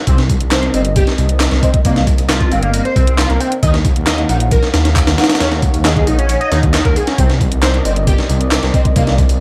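A gritty, swaggering breakbeat groove of thumpy kicks and high-tuned snares from an up-front, compressed sampler-style kit, layered with overdriven electronic handclaps and hi-hats from a garage kit, drives this excerpt under a thick, menacing detuned saw bass, a screaming, guitar-like synth lead riff soaked in phaser and delay, a deep, moody analog pad holding sustained chords in the background, and a distant, hollow wooden flute with an old-record sound that enters at 0.7 seconds, all wrapped in light reverb and vinyl crackle.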